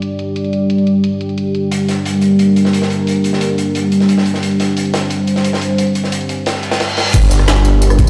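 Dark technical drum and bass with an aggressive, tense mood, opening on a deep, moody analog pad that sustains a G minor chord up front, its detuned sawtooth tone thickened by chorus and pumping under sidechain, while an overdriven electronic kit adds a woody snare, bright hats, rim clicks, tambourine and crash. From 1.7 seconds a gritty, saturated breakbeat kit with a medium-tuned snare and rolled-off top joins in a small room, and a reverse cymbal at 6.6 seconds leads into a knocking, overdriven kick and a thick, detuned saw bass on a low G that both land up front at 7.1 seconds. The whole passage sits in a lush hall reverb and sounds played back on a big system in a bare stone room, cut from a longer piece.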